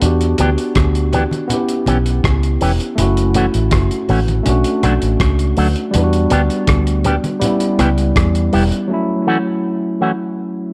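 A lightly reverberant studio sound frames this smooth, longing lovers rock reggae excerpt at 81 BPM, where a barky tine electric piano played through a combo amp sits up front with dub echo, cycling through minor seventh chords from Em7 to F#m7. A dark, round, foam-muted fingered bass punches beneath a muffled, gritty, cloth-damped drum kit with a tight kick, hi-hat and rim click, while low-tuned, soft-handed congas sit in the background and a bright, twangy envelope-filtered guitar adds clean picked stabs. By 8.9 seconds the bass and drums have fallen away for a short break, leaving the guitar to carry on until 10.1 seconds and the electric piano until 10.7 seconds.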